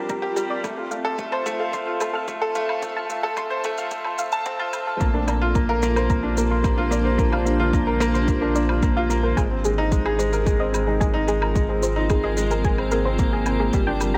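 Lightly reverberant and high-pass filtered, this luminous, hopeful piano and strings electronica, cut from a longer piece, moves at 110 BPM in 4/4 with a woody, slightly detuned upright piano riff up front over a blurred granular cloud pad, a soft round pluck arpeggio with chorus and sidechain pumping under a filter sweep, an overdriven electronic kick, and shaker and woodblock through the build-up, until a deep sine sub bass enters at 5.0 s for the drop as the chords shift from Gm and F to Bbadd9 and Abadd9.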